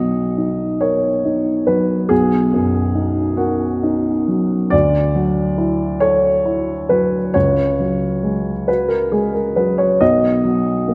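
A woody, open upright piano sits up front and carries this short excerpt entirely on its own, from 0.0 to 10.9 seconds. The style is neoclassical minimalist piano in B major, moving at a slow 46 beats per minute in 6/8 with a rubato feel that lets the time breathe. The mood is hopeful and tender, and the piano spans from a deep B1 up to D#5. The harmony moves from Bmaj7 to Dadd9 at 4.7 seconds, then through F#sus2/C# before settling on B at 10.0 seconds. A lush concert hall reverb with a 2.4-second decay surrounds the instrument, giving each chord a long, airy tail.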